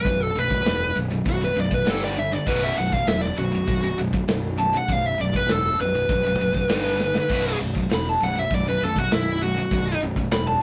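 Relentless and epic, this heavy metal excerpt in B minor drives along at 100 BPM in a straight 4/4. A dark, high-gain lead guitar solo sits up front over bright, picked rhythm riffs from a background distorted guitar and a very quiet, tight second guitar, while a round, punchy fuzz bass anchors the low end and the harmony shifts between B5 and G5. An acoustic drum kit with a tight kick, medium-tuned snare, china and crash cymbals plays in a pumping room sound, with a fill at 7.0 seconds, all captured as a rough rehearsal-room recording with moderate ambience.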